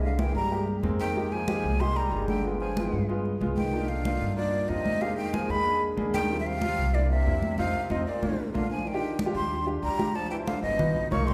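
A sunny, danceable slice of Afro-Cuban jazz in which a breathy, up-front flute with vibrato and a soft attack carries the melody over a punchy trombone line set in the background, an intimate grand piano with audible action noise, a woody, thumpy pizzicato upright bass and bright, close congas, all bathed in a recital-hall reverb, with a drum fill and band accent at 7.6 seconds leading into a new section at 8.9 seconds.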